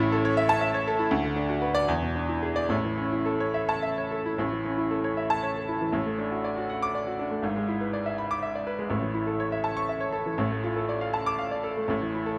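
A clear, present grand piano plays alone from 0.0 s to 12.4 s in this sparkling, heroic classical virtuoso study in A major, unfolding in a rubato 6/8 at about 71-82 BPM in dotted quarters, its harmony moving from A through Bm/D and E7 to D/A, E7/G# and a final turn to Dm/A, with the instrument up front under close, detailed microphones and a moderate recital hall reverb.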